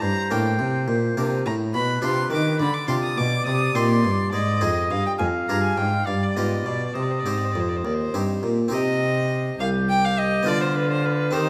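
A rich, gut-string violin carries the melody with light vibrato over a distant, warm oboe second line, a bright plucked harpsichord and a dark, reedy bowed cello bass in this solemn, introspective baroque-style sonata excerpt in a straight 6/8, heard in a moderate recital-hall reverb.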